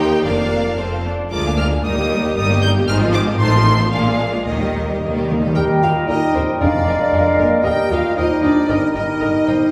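The mellow French horn section stands out most, sitting up front with sustained chords from 5.3 seconds onward in this lively, cheerful classical-period movement for symphony orchestra, cut from a longer piece in a brisk 2/4. The bowed string sections carry it from the start: the violins sing the melody with a focused, vibrato-rich sound while a second violin line, the violas and the distant cellos fill in beneath, and the double basses anchor the bottom. Hard-mallet timpani enter with an articulate fill at 4.5 seconds, leading into a second section where the woodwinds join. An airy flute ensemble, a soft-attacked oboe and a clarinet add second lines, with the flutes and clarinet set in the background and the oboe sounding distant, while a bassoon supports the accompaniment. The harmony moves through cadential changes that return to the home chord, and the whole orchestra blooms in the reverberant ambience of a recital hall.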